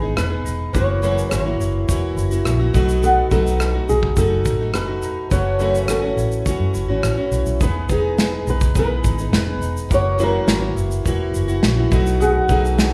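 This easy-going, heartfelt acoustic pop passage, cut from a longer piece, opens with a bright, picked steel-string acoustic guitar playing the accompaniment up front alongside a dark, foam-muted vintage electric bass with a round, amped tone. A loose indie drum kit comes in at 0.2 seconds, its punchy kick, medium-tuned snare, rim click and shaker sounding close and mid-forward, as if in a small room. Over this, a thumb-plucked flamenco guitar carries the melody with a warm tone and audible finger squeaks, while a picked mandolin with doubled strings ripples arpeggios in the background. At a relaxed 105 BPM in straight 4/4, the harmony moves through Emaj7, F#7, B7 and F#m7 before circling back to Emaj7. The whole passage sits in a moderate recital-hall reverb that gives the ensemble the airy resonance of a church or concert hall.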